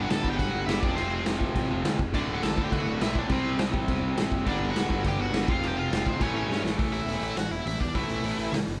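A straight, driving 4/4 at 207 BPM propels this upbeat, rebellious punk rock excerpt, where a raw garage drum kit sits up front with a punchy kick, medium-tuned snare and rolled-off top, joined by a growly fuzz bass and two picked riff guitars, one crunchy and one sludgy in the background. Above them a bright, high-gain lead guitar carries the melody from C4 to A5 over a light room sound, the whole band playing live together as the chords move from G5 through F5, D and C5. A drum fill at 6.5 seconds drops the band into half time from 6.8 seconds, landing on A5.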